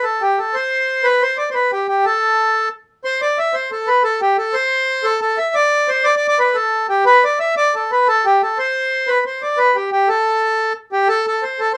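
The accordion plays alone here, up front and reedy, with a dry tuning and a sound that stays full and airy. This is a short cut from a longer Celtic folk piece in A minor, moving at 120 BPM in dotted quarters with a straight 6/8 feel that comes across as driving and spirited. The melody sits in a compact range from G4 to E5. A brief opening statement of the main section runs to 3.0 seconds, and then the same section returns and carries on to 11.1 seconds, with the accordion sounding until 11.8 seconds. Light reverb adds a touch of space around the instrument.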